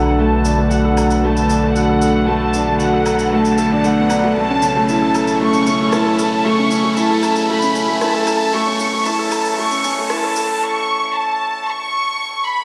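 A bright concert grand piano sits up front with a brilliant, open riff between A3 and A4, its long sustain ringing through this moving, hypnotic piece of piano and strings electronica at 115 BPM in 4/4. Above it a rich studio violin section carries the melody from F#5 to C#6, bowed sul tasto with light vibrato and a soft attack, intimate and close, while a low-pass filter sweep runs across it for the whole 12.6 seconds. A lush, airy unison pad of detuned sawtooth and square waves with a noise layer holds sustained chords through chorus in the background, and a round sine sub bass sits on B1, both stopping at 10.6 seconds. An electronic riser and a kit of electronic shaker, woodblock and rim click, re-recorded in a large room, drive the build-up over a Bm7 moving to Aadd9/B. The dark production is bathed in a wet hall reverb, and the piano and violins carry on alone after the other parts drop out, in this section cut from a longer piece.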